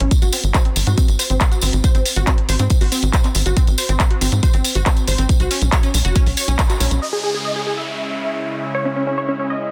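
A dense, heavily limited modern master with light reverb carries this bittersweet, emotional uplifting trance excerpt, where a punchy electronic kick and a nasal, driving sawtooth sequencer bass with sidechain pumping sit beneath a house kit of handclaps and bright hats, a jingly acoustic tambourine, and a detuned unison pluck playing arpeggios through phaser, cassette tape and digital delay as a filter sweep moves across it. After a band accent at 6.6 seconds, the music shifts at 7.0 seconds to a full-bodied, detuned supersaw stab melody with its own filter sweep, low-pass filter and dub echo. Beneath it sit a thick, warbling vintage pad holding sustained chords with chorus and an electronic downlifter.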